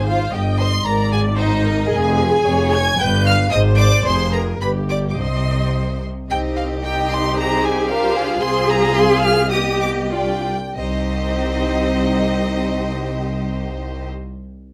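Up front and rich, the double bass section anchors this stormy, restless excerpt from a quick classical-period movement for string orchestra in C minor, played in 2/4 at a rubato 91-116 BPM. Above it, a focused violin section carries a high melody over a smooth second violin line, while violas fill in the accompaniment and a close, even cello section shares the bass role. Everything is bowed with vibrato in a light reverb, with harmony moving from Eb/G through Db/F and G before a slowing down from 7.9 seconds leads to a settle on C minor at 10.8 seconds.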